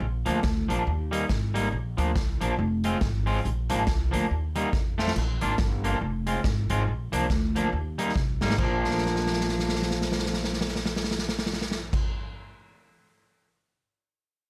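A swung ska groove at 140 BPM in 4/4 drives this upbeat, bouncy fragment in Bb mixolydian, cut from a longer piece. Pizzicato upright bass with a woody tone on steel strings opens the track at 0.0 s and holds down the low end, moving between Bb, Eb, Fm and F chords. Just after, a twangy, slightly broken-up electric guitar enters, picked and up front, its slapback echo giving each stroke a quick doubled snap. The acoustic street-band drum kit, also up front, sounds polished and airy with a boomy kick, medium-tuned snare, hi-hat and dark crash cymbals, carrying on alone briefly after the others stop, until 13.5 s. Drum fills mark the turns between sections, and a longer one runs from 8.8 to 11.9 s, all set in light reverb.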